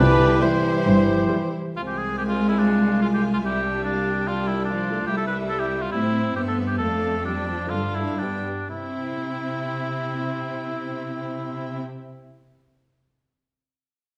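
A quick, cheerful classical-period orchestral passage in C major opens with a brief full-orchestra chord of dark French horns, distant trumpet stabs, timpani, flute, mellow bassoon, clarinet and dark double basses, all gone by 1.8 seconds, leaving rich, vibrato-laden violins carrying the melody over background violins, an up-front warm oboe, focused violas and lush close cellos as the rubato tempo slows between 4.3 and 8.7 seconds before settling back on C in a reverberant recital hall.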